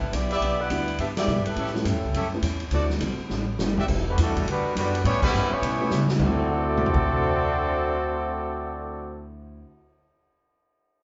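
Energetic and swinging, this fast big band jazz cut at 208 BPM in D mixolydian opens with a mellow saxophone section carrying the melody over a growly, woody upright bass and a punchy, up-front drum kit, while a clear trumpet section adds tight stabs and band accents punctuate the groove. At 4.1 seconds a mellow trumpet section takes over the melody with light vibrato and a smooth top, supported by a vintage-toned trombone section on a second line. A dark, clean hollow-body electric guitar and a natural grand piano comp quietly in the background, all set in a roomy live sound with wet reverb until the piano rings out last at 10.3 seconds.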